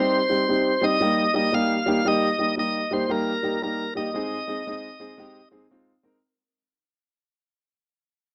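A swung 4/4 groove at 115 BPM sets a joyful, danceable soul feel in E-flat major, heard in a brief cut from a longer piece. A bright tonewheel organ carries the melody up front, its full, shouting tone lightly overdriven and turning through a slow rotary speaker before it stops at 5.5 seconds. Alongside it, a warm, vintage upright piano plays the accompaniment up front, woody and intimate with audible action noise and long sustain, lingering until 6.2 seconds. The chords move from C minor to E-flat and then to A-flat at 4.1 seconds, while a fade-out begins at 2.1 seconds as the second section takes over. A moderate large-studio reverb surrounds the pair, and the top end is rolled off above about 10 kHz.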